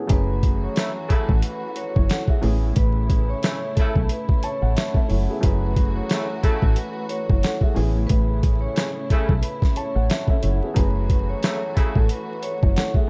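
Moody and tough, this boom-bap hip-hop excerpt sits at 90 BPM in 4/4 with a swung sixteenth-note feel, resting on a single F#m7 chord in F# minor. Up front, a gritty, pitched-down sampler-style drum kit hits with a thumpy kick, medium-tuned snare and hi-hat, while a deep, foam-muted dub electric bass holds the low end with a round, dark tone. A dark, woody upright piano with audible action noise and a slightly detuned character plays accompaniment through a cassette-tape coloring, and a lush, bowed string section sustains smooth chords. A metallic, ringing vibraphone carries the melody with slow motor vibrato and slapback echo, and a mellow, vintage jazz-style horn section adds soft-attack stabs with light vibrato from 0.8 to 12.0 seconds. The production is dark and warm, with vinyl crackle, a small room reverb and filtered highs that keep the whole mix shadowed.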